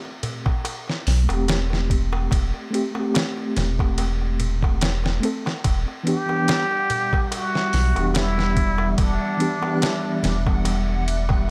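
A digital ambience hangs over this smoky, dark trip hop excerpt, which is cut from a longer piece and carries a lazy swing. A gritty, compressed sampler-style drum kit sits up front with a thumpy kick, a fat snare, hi-hat and ride, while a crisp metal-shell darbuka played with soft hands adds faint acoustic detail from a live room. A round sine sub bass, deep and up front, enters with a reedy electric piano whose fast tremolo, 12-bit sampler grit and tape echo colour the Am7/E and Em7 chords. At 6.1 seconds a plunger-muted trumpet takes a breathy, jazz-style solo with wah-wah, vibrato and scooped notes, also roughened by sampler grit and tape echo. From 6.7 and 7.0 seconds a reversed, granular swelling texture and a moody, detuned sawtooth pad with chorus and reverb settle quietly in the background.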